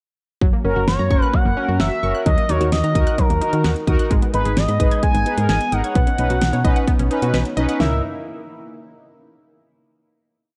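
An expressive synth lead carries this cool, melancholic synth-pop piece, its smooth, nasal tone sitting up front with vibrato and chorus as it sings short, song-like motifs from 0.6 seconds. Beneath it, a punchy pop drum kit drives a straight drum-machine beat with a fat snare, metallic hats and touches of toms, while a round, dark FM bass sequences a solid low line that starts at 0.4 seconds. An analog pluck with a noise layer and filter sweep runs bright rising arpeggios in sixteenths through chorus and analog delay, and a bold, detuned analog synth brass adds close-voiced off-beat chords. A very quiet, swirling phased pad, vintage and warbling with ring modulation, holds sustained chords far in the background. The whole piece plays as a single bridge over a melancholy chord progression before settling on a final chord at 7.8 seconds, all within a dark, lightly reverberant digital ambience.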